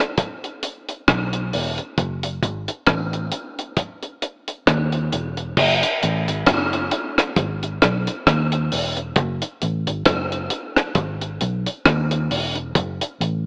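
An AM-radio-style sound colours this short cut from a longer dub reggae piece, bathed in a moderate plate reverb with a 3.2-second tail that lends it a spacious, hypnotic air. At a slow 67 BPM in 4/4, with a 57% swing on the sixteenths, the groove settles into F# dorian, tuned slightly low to A4 = 437 Hz. A deep acoustic reggae drum kit opens alone, dry and dark, pairing a tight kick with rim clicks, hi-hat and crash cymbal. At 1.1 s a vintage fingered electric bass joins, foam-muted, amped, round and punchy, moving between E1 and D#2. Both parts sit up front in the mix, and the music shifts into a new section at 5.6 s that carries through to the end.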